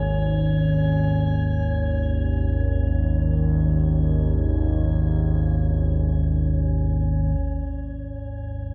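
Dark and desolate, this free-time ambient fragment, tuned to A4 = 439 Hz, sits on a G#5 chord held by an up-front, warbling analog drone of chorused sawtooth and pulse waves, joined until 7.4 seconds by an eerie, metallic FM drone with its own reverb, after which a filter sweep colours the analog drone through to 8.7 seconds, inside a moderate plate reverb.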